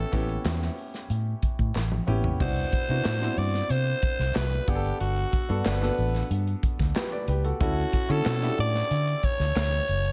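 A raspy, gritty alto saxophone opens this glossy, upbeat slice of polished 1980s jazz-funk pop, carrying the melody up front over a clear concert grand piano and a dark, foam-muted fingered electric bass. The piano, touched with a subtle chorus, supplies accompaniment with deep low notes and short sustain, while the round, amped bass sits prominently beneath it. A modern studio drum kit enters at 0.1 seconds with a punchy kick, medium-tuned snare, bright cymbals and toms, its gated reverb lending the hits a studio-room snap. A drum fill at 1.8 seconds leads into the second section at 2.4 seconds, where the harmony moves from A7 through Cmaj9#11 and Gmaj9 to Dmaj7. Hollow group handclaps sit distant in the background, and the recording carries a small room reverb, cut from a longer piece.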